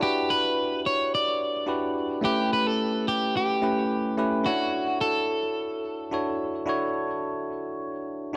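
Chillout at 108 BPM in 4/4, with a light swing on the sixteenths and a warm, smooth mood, moving through Em7, A7 and Dmaj7 in this short cut from a longer piece. A slightly broken-up, picked electric guitar carries the melody up front with tape echo and falls silent at 6.4 seconds. The bell-like, bright tine electric piano accompanies through a low-pass filter and its own tape echo until 8.4 seconds, all set in a lush hall reverb.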